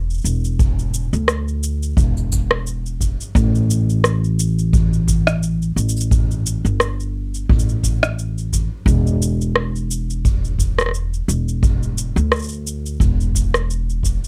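Wistful and intimate, this short folktronica excerpt moves at 87 BPM in 4/4 with a gentle 16th-note swing, tuned slightly below standard pitch at A4 = 439 Hz. A pizzicato upright bass with steel strings carries the low end from the very start, its woody tone ranging from E1 to D2. Just after, an electronic shaker and rim click arrive at 0.1 seconds, bringing a produced, tape-warm texture that sits up front. A boomy acoustic kick drum with a natural hall character joins at 0.6 seconds, also placed close to the listener. With little reverb overall, the sparse trio of bass and mixed acoustic and electronic percussion feels dry and near, cut from a longer piece.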